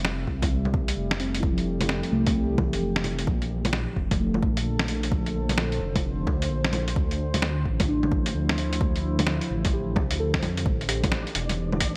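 Ghostly and wistful, this future garage excerpt with a swung 4/4 feel drifts over Fmaj9, Bbmaj9, Dm9 and Am7 on a warbling, phased tape-like pad and a deep, rumbling detuned saw bass, both with sidechain pumping, alongside an overdriven electronic kick. A muffled, pitched-down sampler kit of bongos, hi-hat and snare sits up front, muted felt-like synth keys with chorus and digital delay enter in the background at 1.2 seconds, and a flickering granular texture surfaces only at 11.0 seconds, all within a bright 1980s-style digital production with light reverb.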